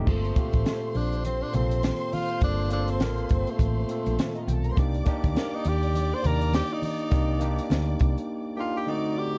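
A breathy, close-miked tenor saxophone carries a jazz-style solo with subtone and vibrato through this cinematic, bittersweet excerpt of lush 1970s-style soul in G minor, moving at 102 BPM with a swung sixteenth-note feel over Gm11 and then Cm9 from 4.8 seconds. A barky, overdriven tine electric piano heard through a combo amp supplies the accompaniment, while a distant, bowed violin section adds an expressive second line. A round hollow-body short-scale bass and a compact cocktail kit sit up front, the kit dry with a high-tuned snare, punchy kick and sampler grit, beside very quiet, low-tuned congas. The drums stop at 8.3 seconds for a break inside a dark production with light reverb.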